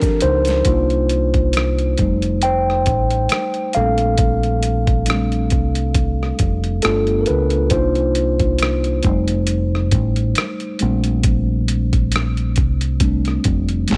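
A brief shake of distant maracas opens alongside a mellow tine electric piano and a gritty, overdriven boom bap drum kit of thumpy kick, snare, rim click and hi-hat, before a dark, round fingered electric bass enters at 0.2 seconds in this smooth, late-night neo-soul R&B piece at 68 BPM with a swung sixteenth feel. From 0.7 seconds the electric piano takes a solo over a Cm11, F9 and Bbmaj13 progression, with a G7 turning the cycle back around at 6.8 seconds. The compressed, sampler-style drums sound re-recorded in a small room and sit up front with the bass and keys, the whole mix touched by light digital reverb.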